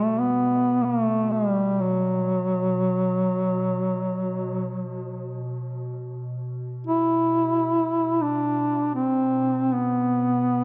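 A mellow duduk sings a mournful, longing Caucasian lament up front, its smooth top carrying vibrato and scooped notes in a folk style, with tape echo trailing its lines. Beneath it a warbling, detuned, lo-fi pad holds a low drone throughout, its slow attack, long release, chorus and built-in reverb giving a nostalgic haze. A moderate scoring-stage reverb and dark production frame this brief 10.6-second passage cut from a longer piece.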